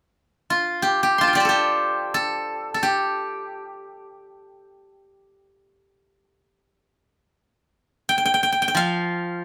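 In free time, this short passage from a longer Chinese traditional piece unfolds with a flowing, elegant mood. A solo steel-string zither carries the whole performance, entering at 0.5 seconds and sounding until 9.4 seconds. Played with fingerpicks, its acoustic tone is bright and silvery, with notes that ring out across a range from low to high in the instrument's register. The zither sits up front in the mix, giving its plucked strings a clear, immediate presence. A wet studio reverb surrounds the playing, and the live room recording lends the brief fragment an open, natural air.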